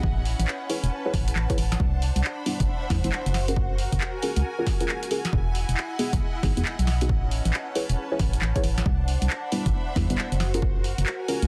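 A soulful, bouncy two-step garage cut opens with an ethereal, airy pad held in the background under ensemble chorus and its own reverb, a clear symphonic string section with light vibrato, a punchy analog kick, and a hollow, organ-like FM bass sitting dark and up front, with the pad, strings and bass pumping against the sidechain. A drum machine adds claps, hi-hats and a snare with a short room from 0.3 seconds, and soft, nasal chord stabs with a sub octave, filter sweep, chorus and digital delay arrive at 0.7 seconds, moving through major-ninth chords over a swung sixteenth-note groove. The dense, heavily limited master carries little reverb and a layer of vinyl crackle, and the passage is cut from a longer piece.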